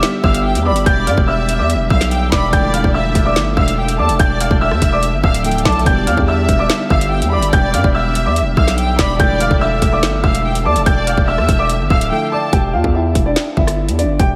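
Soaked in cathedral reverb, this dreamy, menacing drill cut in E phrygian moves at 144 BPM with a half-time feel, setting a dark, worn baby grand piano melody with audible action noise over a lush, bowed violin section and soft, round electric-piano-like synth keys with chorus and tremolo, all driven by a drill kit of hard-clipped kick, woody snare and metallic hats and an aggressive, saturated 808-style bass sitting up front, with the drums briefly muted at 12.1 seconds and the violins and keys stopping at 12.5 seconds.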